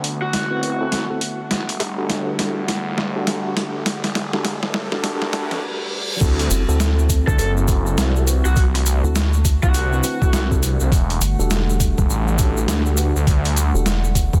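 A swirling, thick detuned saw bass with phaser and tube saturation anchors this playful, swaggering glitch hop clip, sitting up front under a warbly, nostalgic tape-like pad, gritty pitched-down boom bap drums with a high-tuned snare, and mellow tine electric piano stabs soaked in tape echo and sidechain pumping. A lo-fi overdriven guitar flickers in briefly, and a very quiet riser and reverse cymbal join a drum fill and filter sweep to build toward the drop at 6.2 seconds. There a thumpy overdriven electronic kick, a grainy, bright cabasa and a rubbery, nasal square bass arrive, with the guitar returning for a short melody over the swung groove and its D7 to Em11 changes in a dense, heavily limited mix.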